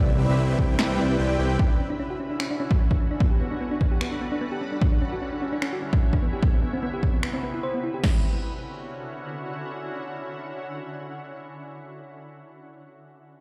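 A half-time future bass groove at 149 BPM with a light swing on the 16ths drives this bright, playful cut from a longer piece in D major, moving through Cmaj7, Dmaj9 and Gmaj9 chords. It opens with a huge compressed supersaw riff, fat analog bass, and glassy digital keys carrying gritty 12-bit sampler character, all pumping against the sidechain before dropping away at 1.6 s. A punchy, overdriven dance kit arrives up front at 0.6 s, joined by layered finger snaps at 0.8 s, while an ethereal, shimmering pad glides underneath from the very start through to 12.0 s. At 1.6 s a round, tine-like FM pluck takes over with chorused, delayed arpeggios, all heard in a stony room with light reverb.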